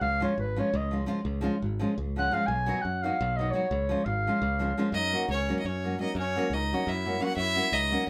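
Wild and exuberant, this short Balkan folk excerpt races along in 7/8 at 344 BPM, the soft-attacked classical clarinet taking the lead until 4.9 s, over a fingerpicked nylon-string guitar with audible finger squeak and a bright, growly fingered electric bass, before the key lifts from D-flat to F-sharp Mixolydian and a rich, reedy, gut-string fiddle takes the melody, all heard as a band playing live in one wet-sounding room.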